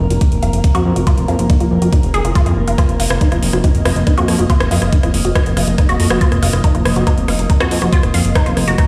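A morphing, detuned wavetable pad and a fat, thick sawtooth analog bass open this driving, hypnotic psychedelic trance excerpt in straight 4/4, joined almost at once by a woody, wave-folded pluck riff with chorus and digital delay, the pluck and pad both pumping to the sidechain, plus an overdriven, knocking electronic kick up front and an overdriven garage kit of metallic hi-hats and rim clicks, while a filter sweep runs over the synth arpeggio throughout and a barely audible swell surfaces at 8.8 seconds, the whole mix sounding as if played on a big sound system in a bare, stone-walled room.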